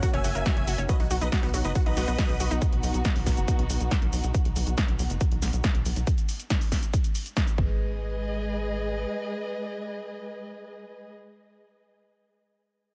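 Emotional and euphoric, this uplifting trance cut in G# minor at 139 BPM opens on a drop where a huge, detuned supersaw lead with phaser, dub echo and sidechain pumping sings for the first 2.5 seconds alongside nasal, wave-folded analog pluck arpeggios carrying chorus, cassette tape colour and delay, over an up-front overdriven electronic kick, a punchy tape-warm drum machine of hi-hat, shaker and snare, and a tight, driving sequencer bass that pumps with the sidechain, while a dark bowed string section with vibrato and portamento sustains chords until 11.1 seconds as the harmony moves from F# and B to G# minor.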